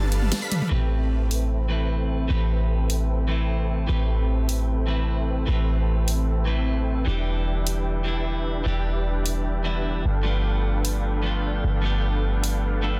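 Future bass at 151 BPM in A minor with a half-time feel, emotional and bittersweet, cut from a longer piece. It opens with a dubstep drum fill under a brief, bright unison pluck arpeggio in the background that stops at 0.7 s, when a clean, picked electric guitar enters with delayed accompaniment over chords moving from Am9 to Em7 at 7.1 s. A huge, detuned supersaw riff with low-pass filtering, delay and vibrato sits above a deep, boomy 808-style bass placed up front, while the layered electronic kit's soft-clipped snare hits hard through a dense, heavily limited modern master.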